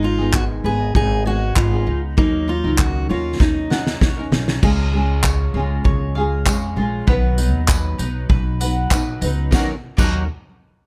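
A fingerpicked steel-string acoustic guitar carries a full-bodied melody over double-tracked nylon-string guitar, round mandolin arpeggios and a woody, thumpy pizzicato upright bass in this tender, reflective acoustic pop excerpt in Eb minor at 98 BPM, as a loose indie drum kit with a fat snare, punchy kick and dark cymbals plays from 0.3 seconds with a fill at 3.4 seconds, the melody guitar stops at 4.0 seconds, and a bright, jingly, distant tambourine joins in the background at 5.2 seconds, with little room reverb overall.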